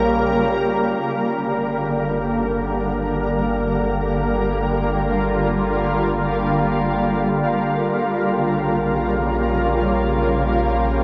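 Ambient music in free time, spacious and serene, cut from a longer piece, where a shimmering, ethereal pad holds sustained chords with slow attack and long release, its detuned unison voices brightened by chorus and an octave-up shimmer reverb and set up front. Beneath it a round, deep analog bass sits low and dark in the mix, sustaining under the harmony as it moves from Bbm6 to Gm7 at 1.0 seconds and back to Bbm6 at 7.9 seconds. A huge, wet reverb with an 8.4-second decay and a worn, warbling cassette-tape character with drifting pitch colors the whole sound.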